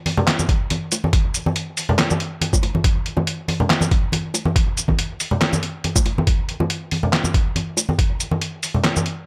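A brooding, cavernous dubstep groove opens with a pitched-down, sampler-style trip hop kit of handclaps, hi-hat, shaker and a medium-tuned snare, muffled and overdriven up front, alongside ringing acoustic congas and bongos placed close and treated with dub echo. At 0.5 s an electronic kick joins with a thumpy, compressed, overdriven punch, sitting in a swung half-time feel. Light reverb surrounds this drums-only fragment of a longer piece, with the kick dropping out at 8.1 s before the other percussion ends.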